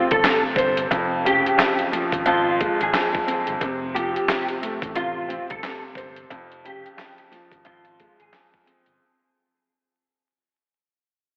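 A swung sixteenth-note groove in 4/4 drives this brief boom-bap hip-hop clip, warm and soulful in mood, cut from a longer piece and fading out across its full length. The sampler-style drum kit sits up front, compressed, pitched down and gritty, with a thumpy kick, a medium-tuned snare, hi-hat and handclaps. A woody, smooth, vintage upright piano carries the accompaniment, also up front, its short-sustained chords moving between F and Dbmaj7 over F, while a fingered electric bass adds a punchy, amped low end from 0.1 seconds. Over them, a dark, clean electric guitar plays the melody through ensemble chorus and tape echo until 8.5 seconds. The mix is soaked in a lush hall reverb, with vinyl crackle and a telephone-like tone that lend it a dreamy haze.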